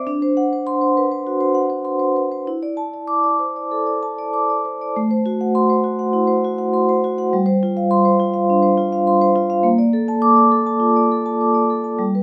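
A D6 chord rings out on solo vibraphone at 0.1 s, struck with soft mallets and shimmering with a slow motor vibrato, opening this flowing, reflective contemporary classical piece in 4/4 at 101 BPM, played rubato and tuned to A4 = 438 Hz. The mellow, metallic tone sits up front under close, detailed microphones with light reverb, ranging from G3 to D6 as the harmony moves through E7sus4 into a new section at 4.9 s on Am6, then G7sus4. The passage settles on Bbmaj7 at 9.7 s, cut from a longer piece.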